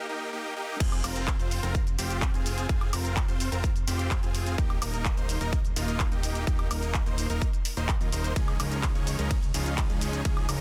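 Anthemic and emotional, this festival progressive house excerpt in F minor runs at 127 BPM, opening with a brief break where a huge, euphoric supersaw lead with detuned sawtooth unison and delay plays its riff over an Eb chord before the drop lands at 0.8 seconds. There a punchy, up-front electronic kick and a layered big-room kit of crash, ride, handclaps, hi-hat, shaker and woodblock arrive with a fat, saturated analog bass, the bass and lead both pumping under sidechain as the harmony moves from Fm to Eb and on to Dbadd9. The dry, dense mix is heavily limited and high-pass filtered, with the kick cutting off at 10.3 seconds just before the other parts close.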